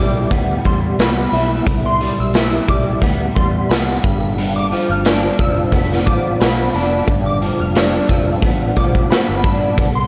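Indie bedroom pop in a laid-back, hazy mood, this cut from a longer piece sets a slightly broken-up, lo-fi electric guitar through a small old amp with chorus and vibrato over a round, foam-muted vintage bass and a gritty, saturated garage drum kit of punchy kick, hi-hat and snare that enters at 0.3 seconds, while a detuned, shimmering FM bell with a long halo of phaser, lush chorus and tape echo floats high above a lightly swung move from Cmaj7 to G7 in a small, lightly reverberant room.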